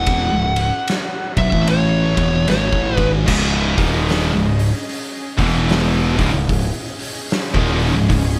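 Stoner and doom metal excerpt in C# minor at a slow 75 BPM with a swung 4/4 feel, brooding and heavy, built on two thick fuzz guitars playing a riff in the background over a growling overdriven picked bass and an oversized low-tuned acoustic drum kit that sits up front with a punchy kick, saturated grit and a rolled-off top. A dark, compressed fuzz lead guitar carries a short melody with plate reverb and digital delay until 3.1 seconds, while a very quiet, tense bowed-like drone with vibrato and a slow attack sustains chords throughout. At 3.3 seconds the harmony shifts from C#m to power chords on C#5 and E5 as a bright, double-tracked tight distorted guitar joins the riff, all in a light reverb.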